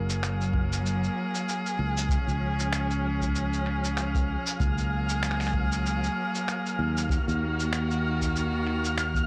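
A dry, lo-fi home cassette recording, this short cut from a longer folktronica piece feels playful and hopeful, moving at 96 BPM in F# major with a lightly swung 4/4 feel. A bowed, vibrato-rich string quartet holds clear chamber chords up front, while a fingerpicked concert harp rings in the background through analog delay until 2.9 s. A bright, growly fingered electric bass sits direct and forward beneath a flickering, grainy granular texture with its own reverb, as muffled, pitched-down sampled shaker and finger snaps arrive at 0.1 s, joined at 0.5 s by a boomy acoustic kick played with brushes, over chords moving from F#add9 through C# to D#m.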